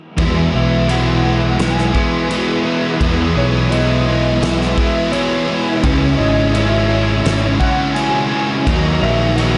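A straight 4/4 pulse at 85 BPM carries this blissful, hazy shoegaze and dream pop excerpt in E lydian, its loose indie drum kit thumping with a punchy kick, fat snare and dark crash cymbal inside a pumping room. A picked electric bass sits up front, direct and amped, while two overdriven guitars play riffs in the same register: one biting and bathed in lush chorus, the other a hollow-body semi-hollow guitar trailed by reverse reverb. Behind them a swirling, detuned analog pad holds bright sustained chords through phaser and chorus, set back in the background. At 0.6 seconds a velvety synth lead enters with a warbling, vintage sawtooth-and-triangle tone, smoothed by vibrato, chorus and analog delay. The harmony moves from E to C#m at 5.8 seconds and D#m7 at 8.7 seconds, all within a dreamy mix soaked in plate reverb with its top end rolled off.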